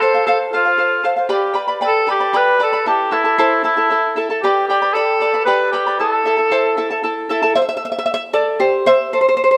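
In a straight 6/8 lilt at 77 BPM, this melancholic yet festive fragment of Andean folk in A minor sets a distant, classical-style cor anglais melody with light vibrato over a shimmering, fingerpicked acoustic charango whose double strings, some doubled at the octave, move through F, G and A minor before the charango plays alone from 7.6 to 9.6 seconds, all heard from further back in a room with a moderate plate reverb.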